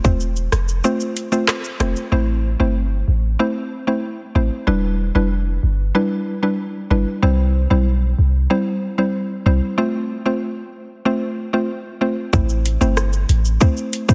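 A straight 94 BPM dancehall groove in 4/4 opens the excerpt, driven by an electronic island pop kit of tight kick, metallic hi-hat, rim click, handclaps and shaker sitting up front. The kit drops out at 2.1 seconds and returns at 12.3, with a break beginning at 9.8 seconds. Underneath, a clean 808-style bass delivers deep, boomy sine tones with a fast attack and natural decay, holding the low end through most of the passage. A woody, round FM synth pluck with a mallet-like character and a noise layer carries the accompaniment, its percussive notes shimmering with chorus and breathing with sidechain pumping. The harmony in A minor moves from F to Am, Em7 and C, then back through F to Am, giving the bouncy, tough mood a dark undertone. The mix is dense and heavily limited with light reverb, keeping the parts close and punchy.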